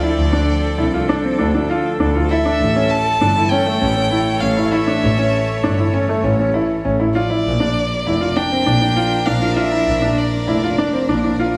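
A woody, polished upright piano riff with digital delay sits up front in this hypnotic, intimate piano-and-strings electronica excerpt at 99 BPM in 4/4, alongside a close, airy sul tasto violin melody that also carries delay, the rich, soft-attack sustained chords of a light-vibrato string quartet, and a bright, lush bowed double bass section entering at 0.2 seconds, all moving through Dmadd9, A and Bb inside a moderate echo chamber reverb with small room ambience.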